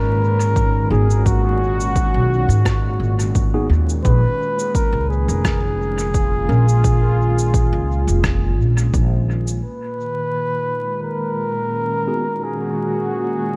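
A bucket-muted trumpet plays a dark, veiled melody with light vibrato and dub echo. It opens this spacious, meditative ambient dub fragment at 86 BPM in G# dorian, over a detuned sawtooth pad treated with chorus and tremolo and a woody, growly pizzicato upright bass. Moments later, a muffled, overdriven cabasa and rim click with their own dub echo and a punchy layered electronic kick settle into a lightly swung 16th feel, while a mellow tine electric piano adds very quiet stabs as the chords move from G#m7 to A#m7. The kick fades out at 9.1 s, and at 9.6 s the bass and remaining percussion drop away, leaving trumpet and pad to float over G#m7 amid vinyl crackle and light reverb, and the electric piano returns for one brief stab at 12.1 s.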